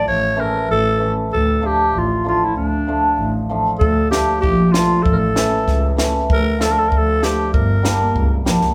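Klezmer in 2/4 at 96 BPM in D harmonic minor, bittersweet yet festive, this short excerpt from a longer piece features a growling, raspy clarinet up front with jazz-style vibrato, carrying the melody over a shimmering, hammered cimbalom and a veiled, bowed double bass played con sordino with portamento. A compact cocktail drum kit joins at 3.8 seconds, its dry, high-tuned snare and punchy kick adding lift as the opening phrase repeats. The harmony moves between A and Dm before reaching Gm at 7.5 seconds, and the band plays live together in one room with moderate studio reverb.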